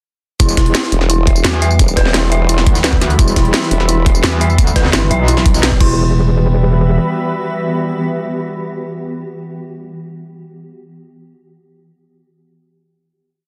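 This dark, technical drum and bass piece opens at 0.4 s straight into a mechanical, futuristic drop, where a knocking electronic kick sits up front under tight, layered drums with a cracking snare, bright closed hats, tambourine and crash, all re-recorded in a small room. Beneath them, a very quiet, gritty, pitched-up jungle breakbeat with a high-tuned snare loops with edits, carrying the faint air of a large room. A metallic, aggressive FM wobble bass, saturated and pumping against the kick, drives modulated phrases with changing wobble speed, while a sawtooth formant-sweep wobble bass answers it for a stretch. Above, an eerie, inharmonic synth bell repeats a 16-step arpeggio through chorus and digital delay, as a swarming, detuned granular drone and a warbling, nostalgic lo-fi pad fill the space with sustained reverberant chords. At 6.0 s the drums fall away and the piece settles on a final chord, with the drone and pad holding on until 9.5 s.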